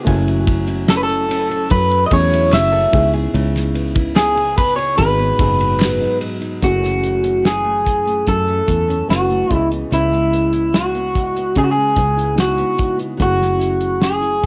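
A slightly broken-up, compressed electric guitar through a small old amp carries the melody up front from 0.9 s in this mellow, wistful bedroom pop excerpt at 73 BPM, its lo-fi tone touched with subtle chorus over F#m7, C#m7 and G#m7 chords. Beneath it, a cloth-damped, gritty drum kit with a fat snare, tight kick and dark cymbals plays up front alongside a round, foam-muted fingered bass. A fingerpicked nylon-string guitar with warbly pitch drift and a reedy, worn, slightly out-of-tune electric piano murmur in the background through cassette tape, while crisp group handclaps join from 0.9 to 6.0 s, all in a small room with moderate reverb on a home cassette recording.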